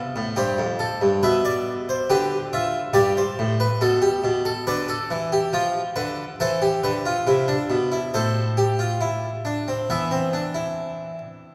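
Serious and driving, this short classical excerpt presents a baroque-style fugue in three parts, taken from a longer piece and set at a steady 69 BPM in straight 4/4. A lone harpsichord carries the whole performance from 0.0 to 11.5 seconds, its plucked Italian-style tone full and doubled by two sets of strings, placed up front in the sound. The playing spans from F2 up to E5, moving through a harmonic path that starts on F, passes through B diminished and G add9, and arrives on A minor at 8.1 seconds before settling on an open E fifth. A deep church reverb with a long 3.4-second decay surrounds the instrument, giving the counterpoint a resonant, cavernous setting typical of a church or concert hall.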